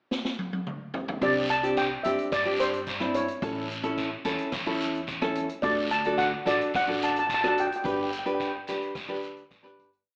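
A straight 4/4 calypso groove at 109 BPM opens this short, complete piece, with a street-band drum kit playing a fill across hi-hat, kick, rim click, snare and toms as a pickup before the verse lands at 1.2 seconds. From there the steel pan carries a motif-based melody of song phrases, its metallic, shimmering tone softened by rubber sticks and sitting up front in a boxy small-room sound. A bright, full-bodied nylon-string guitar fingerpicks syncopated triad chords close beside it, while a woody, thumpy upright bass in pizzicato plays a two-feel root-and-fifth line, and a raspy guiro scrapes its pattern from a distant, large-room space. In C major, the harmony moves from Csus2 through A and D to G, and the drums keep a calypso groove with a medium-tuned snare and boomy kick. The whole band sits in a wet recital-hall reverb with an AM-radio colour, giving the bouncy, festive mood a vintage, broadcast feel as it fades out from 7.8 seconds to the close.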